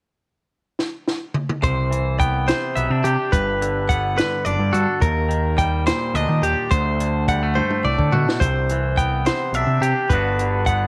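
Math rock and midwest emo in 6/8 at 71 BPM, this bright, wistful fragment opens with a drum fill on a dry, compact cocktail kit with a high-tuned snare and tight kick, then from 1.6 seconds a growling, overdriven picked bass, a twangy electric guitar bathed in spring reverb, and a direct-recorded clean guitar spinning crisp arpeggios up front move through Cmaj9, Gmaj7, Ebmaj7 and D7 in a small, lightly reverberant room, with another drum fill at 7.6 seconds.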